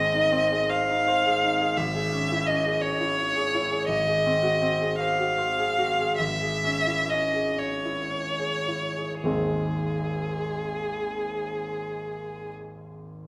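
Set in a wet recital-hall reverb, this tender, warm romantic classical duo, cut from a longer piece, moves in a rubato 6/8 at 34-57 BPM in dotted quarters in Ab major (tuned to A4 = 444 Hz), with an up-front, rich and focused bowed solo violin singing the melody with vibrato over a bright, brilliant grand piano accompaniment of vintage character and long sustain, the harmony drifting from Ab through Dbm/Ab and Ab7 as the pace slows from 2.8 to 9.2 s before returning to Ab for a closing passage where the violin falls silent at 12.5 s and the piano rings on briefly.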